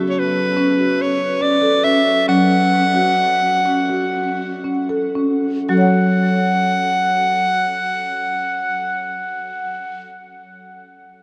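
Hypnotic and meditative, this world piece in 7/8 is cut from a longer work and opens with a dark, smooth marimba playing up-front arpeggios with medium mallets, wrapped in a diffuse ambient delay. A breathy soprano saxophone carries the melody in a whispered, intimate subtone, with soft attacks and scooped notes, close and present as a solo voice. The pulse slows through the first 5.7 seconds before a second section settles onto a minor chord, all afloat in a huge, wet reverb.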